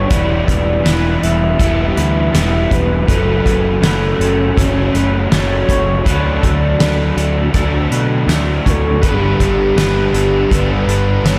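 A pure, breathy sine lead with vibrato and portamento glides through the melody over chorus and diffuse delay, opening this hazy, dreamy shoegaze and dream pop excerpt at 81 BPM in G lydian. An overdriven semi-hollow guitar riff and a lo-fi garage guitar riff with reverse reverb ride on a punchy fuzz bass and a loose indie drum kit with a fat snare and pumping room sound, while a twangy, clean electric guitar plays chorused arpeggios in the background. Over chords moving from Em7 through F#m and Dmaj7 to Gadd9, a bright, double-tracked cranked stack guitar joins at 9.0 seconds, all bathed in a lush hall reverb.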